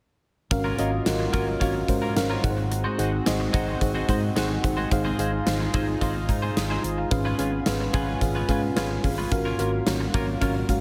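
1980s-style pop at 109 BPM with an uplifting, romantic mood, cut from a longer piece, where a gated drum kit with a tight kick and medium-tuned snare sits up front in a bright stone room beside a round fingered electric bass, while a mellow FM electric piano plays chorused accompaniment, a twangy, clean twelve-string electric guitar picks a riff through subtle chorus and digital delay, and a retro pulse-width pad holds slow-attack chords in the background, the piano, guitar and pad all bathed in shimmer reverb, over a Gbmaj7/Ab, Ab7, Fm7/Ab, Db7/Ab progression in a lush hall.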